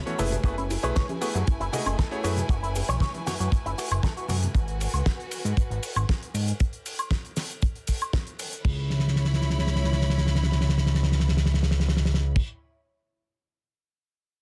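Sensual and cosmic, this nu-disco excerpt moves at 117 BPM in a straight 4/4 in C# minor, opening on a drop over F#m11 before shifting to G#m7 at 4.5 seconds and C#m7 when a second section arrives at 8.7 seconds. A fat, detuned analog bass with a moving notch sits up front throughout, while a lush, bowed symphonic violin section holds smooth sustained chords with vibrato. In the first moments, a bright, clangy electric grand piano and a soft, round synth pluck playing arpeggios both breathe with sidechain pumping and trail off into dub echo, the pluck also carrying a chorus sheen from the background. A dark, clean electric guitar riff through an envelope filter, with subtle chorus and dub echo, runs until about 4.4 seconds, alongside vintage, band-limited congas, tube shaker and bongos. Two damped 70s drum kits supply a dry, acoustic groove. One sits up front with fat snare, tight kick, crash cymbal and dark cymbals with a rolled-off top, carrying through to a drum fill from 8.9 seconds. 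The other adds cabasa, hi-hat, ride, woodblock and a fat snare. A small room ambience surrounds the parts, and the master is dense and heavily limited.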